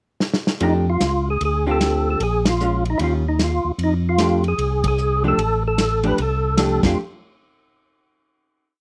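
A swinging 4/4 groove at 151 BPM opens this short, soulful soul jazz organ trio piece in F major, with the drums entering at 0.2 seconds for a quick fill before the band arrives at 0.6 seconds. The dry, muffled kit sits up front with a tight kick, a medium-tuned snare on the backbeat, and dark cymbals playing a ride pattern, its rolled-off, lo-fi character giving the pulse a vintage feel. A fat, percussive tonewheel organ carries a motif-based melody built in sentence-like phrases, its third harmonic percussion and chorus vibrato turning slowly through a rotary speaker. Underneath, a second organ handles the bass in a two-feel, lightly overdriven and full through its own slow rotary, while a dark, compressed hollow-body electric guitar comps syncopated three- and four-note chord shapes over changes that move from F69 through Dm7, Bbm7 and Eb9 back to F69. The close, detailed sound has little reverb, band accents punctuate the groove, and everything resolves into a final hit at 7.0 seconds.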